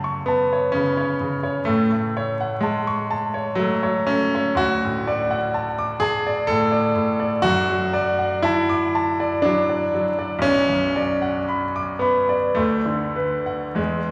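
A long, wet church reverb with about 3.6 seconds of decay surrounds this recording, with vinyl crackle and studio ambience beneath it. The short passage comes from a romantic nocturne for solo piano, dreamy and nostalgic, moving in 3/4 at a slow, rubato 47 to 66 BPM and tuned to A4 = 443 Hz. The grand piano sits up front with a brilliant, polished tone, and its audible action noise gives the playing an intimate closeness. It ranges from B1 up to D6 across the full 14.1 seconds. The harmony drifts through F#m, F#m/A, D, D/F#, Bm and Bm/D before the passage breaks off.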